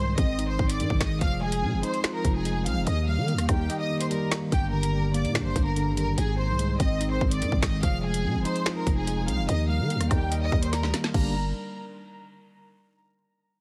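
A distant, vibrato-rich violin section carries the melody through tape echo over clean tine electric piano accompaniment and a growling, buzzy 808-style bass, while a warbly, nostalgic pad sustains chords in the background and an up-front drill drum kit of hard-clipped kick, woody snare, metallic hats, finger snaps and rim clicks sets a cold, dark half-time hip hop feel, breaking at 3.7 seconds and filling at 10.7 seconds inside a heavily compressed, radio-like mix.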